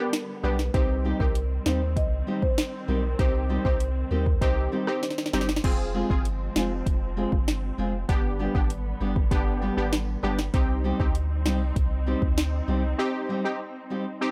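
Dancehall at 98 BPM in C harmonic minor, this excerpt cut from a longer piece has a sultry, hypnotic feel, moving from G to C minor and later through F minor and back. A woody marimba carries the melody with a tape echo for the first 5.0 seconds, while a bright, detuned sawtooth brass stab with chorus and sidechain pumping punches out the accompaniment up front. Beneath them, a muted, veiled string section holds lush bowed chords in the background, also pumping with the sidechain, and a dark, boxy nylon-string guitar fingerpicks arpeggios through its own tape echo. An electronic afro-pop kit with a deep kick, sharp snare, metallic hats, rim clicks and crash sits forward, marking the shift to the second section with a fill from 5.0 to 5.6 seconds, and a sine-based sub bass with a pitch-drop attack anchors the low end. The sound is dry and gritty with little reverb, and a break arrives at 13.0 seconds after the drums and bass have dropped out.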